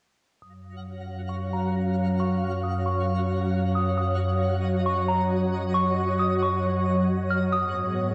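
Blissful and dreamy, this short half-time hip hop excerpt drifts over a glassy, ethereal FM pad that sits up front with slow-attack, sustained chords from 0.7 seconds, moving from F#maj7 to G#m9 at 7.5 seconds. A delicate, tinkling synth tine bell carries the melody from 0.4 seconds with a chorus-tinged, analog-delayed shimmer, while a faint granular texture adds sparkling, octave-up twinkles. A filter sweep runs through the passage, and the whole is bathed in a lush hall reverb and recorded at home on cassette.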